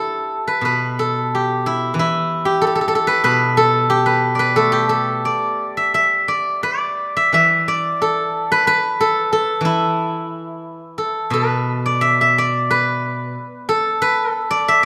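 A moderate concert-hall reverb surrounds a single acoustic steel-string zither, placed up front, its bright, silvery, ringing tone shaped by fingerpicks. This is a contemplative, longing piece of Chinese traditional solo plucked-string music in the E yu mode, moving freely in rubato around 85-94 BPM in 2/4 and ranging from B2 to E5. Cut from a longer work, it opens with one extended passage before shifting to a new section at 11.3 seconds that carries through to the close at 14.8 seconds.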